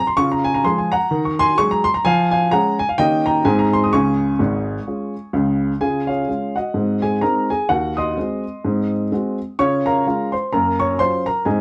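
Stride jazz in a playful, swinging mood, carried by a solo upright piano that plays from 0.0 to 11.6 seconds, spanning from deep bass notes up into its high register. The instrument sounds woody and intimate, placed up front, with the audible noise of its action adding a natural, close-up character. A light reverb gives the piano a little space. The harmony moves between tonic chords and dominant sevenths, and the passage closes on a major seventh chord around 10.5 seconds. The clip is cut from a longer piece and falls into two matching sections, the second beginning at 5.8 seconds.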